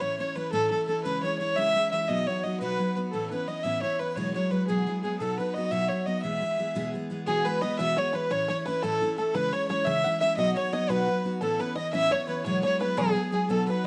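A rollicking 6/8 jig with a straight, even lilt drives this cheerful Celtic folk fragment, cut from a longer piece. A single dark fiddle carries the melody up front, its nasal, gut-string tone and airy bow coloured by a slapback echo. A picked steel-string acoustic guitar sits equally forward with a bright, full-bodied dreadnought sound, while a musette accordion, very quiet and close-miked, adds a shimmering, reedy second line. At 7.3 seconds a bluegrass banjo joins with its own very quiet second line, twangy and percussive under fingerpicks. The sound recalls a dry 1970s-style studio session with only light reverb, as the chords turn through A, C#m, B and Aadd9 before resolving on E.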